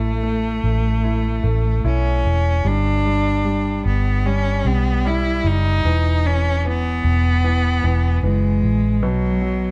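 A warm production with the ambience of a small room frames this short cut from a longer pop ballad, its mood hopeful and emotional in a straight 4/4. A single bowed cello carries the melody up front, its rich, nasal, slightly boxy voice focused and coloured with vibrato. Beneath it, a clear concert grand piano supplies smooth accompaniment with a deep bass register and a vintage character. A foam-muted, fingered electric bass sits up front in the lowest register, with an amped, round and dark tone. The harmony moves from A to G, then to E, and arrives on a B5 chord at 9.0 seconds, with all three parts sounding together throughout.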